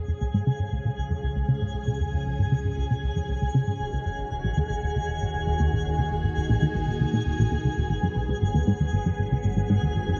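Opening at once with a punchy, up-front analog bass riff under a filter sweep and tape echo, a bright, swirling phased string machine fading in on slow-attack chords, and a twinkling granular shimmer up high, this hypnotic, expansive excerpt of sequencer-driven ambient space music moves at 117 BPM in a straight 4/4 through C#, D#m7 and G#m7, with a chorused, pulse-width-modulated analog drone settling into the background from 0.7 seconds, all set in a vast cathedral-like reverb.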